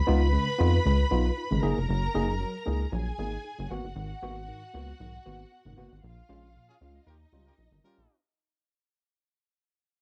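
A lush, bowed violin section with vibrato opens this driving, danceable disco excerpt at 116 BPM in G# dorian, carrying a second line over a worn, slightly out-of-tune tine electric piano played through a combo amp, both with a cassette tape coloring. Underneath, an up-front, rubbery square-wave bass with a dark, resonant filter pluck bounces through jazzy chords such as C#7, G#m9 and D#9, all in a small-room home cassette sound. The band accents from 6.0 seconds, with a punchy, mellow horn section adding faint stabs in the background from 6.7 seconds, while the whole passage fades out.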